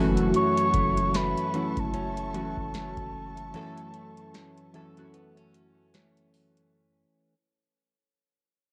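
Dry, tape-worn cassette sound frames this brief, moody and sensual contemporary R&B fragment at 75 BPM with a swung 16th feel on F#m7, where up-front round analog keys with chorus and a soft octave-layered synth lead with vibrato carrying the melody sit over picked, clean electric guitar arpeggios, lush bowed dark strings with sidechain pumping, a booming analog drum machine with deep kick, crisp snare and metallic hats, and a mellow sine 808-style bass that holds until 3.5 s, when a break begins as the piece fades out.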